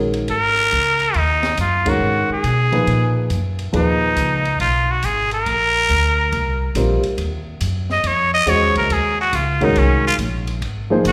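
Intense and searching, this modal jazz fragment swings in 4/4, with a dark, mellow baby grand piano comping up front, its action noise audible, over a woody, thumpy pizzicato upright bass and an open drum kit with dark cymbals, a high-tuned snare and a boomy kick. A nasal, raspy trumpet with a straight mute carries the melody from 0.3 seconds, breathy and growling with scooped notes and light vibrato, and the band hits an accent at 1.8 seconds. At 7.2 seconds the harmony settles into a dorian mode and the muted trumpet takes a solo, all of it bathed in the long, wet reverb of a recital hall.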